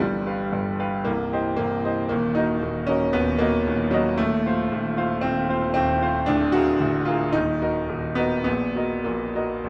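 Rubato pulls and pushes the 4/4 metre, giving this short passage of a classical virtuoso piano study an agitated, passionate urgency. A solo grand piano carries everything from 0.0 to 9.7 seconds, spanning the deep bass at C1 up to F5. Its tone is brilliant and smooth with a vintage character, placed up front with a long sustain that lets each harmony ring. The chords move restlessly through dominant sevenths and inversions before settling back toward the home minor chord near the close. A moderate concert hall reverb surrounds the instrument, and the passage is cut from a longer piece.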